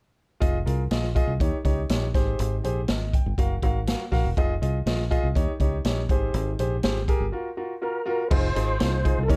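A punchy, up-front acoustic drum kit with a swinging big-band feel drives this uptempo 1960s-style soul excerpt at 122 BPM in 4/4, its crash, hi-hat, medium-tuned snare and kick captured naturally in a studio room. A foam-muted fingered electric bass sits up front alongside it, direct, warm and punchy in the low register, while a clear concert grand piano with deep bass supplies the accompaniment across a cycling Fm7, Eb7, Abmaj7 and Gbmaj7 progression, tuned to A4 = 445 Hz. A break arrives at 7.3 s, and at 7.8 s a lightly overdriven tonewheel organ enters with a short melody, its key click, chorus vibrato and slow rotary speaker giving it a clear, warm character. A new section begins at 8.3 s, returning to Fm7. The danceable, warm mood is framed by a dark production with light reverb.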